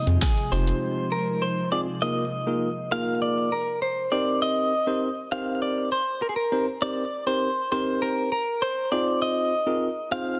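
A dense, heavily limited master in a lush hall reverb frames this upbeat, summery dance-pop excerpt at 100 BPM, where a bright, clean, direct-recorded electric guitar with subtle chorus and delay carries the melody throughout over a sidechain-pumped tine electric piano. A glassy, ethereal FM pad holds chords only until 2.0 s, while a round sine sub bass, a deep house kit of deep kick, metallic hats, handclaps and shaker, and a very quiet, jingly tambourine all fall away within the first second. The harmony moves from Fm7 through Bb7sus4 and Cm7 back to Fm7.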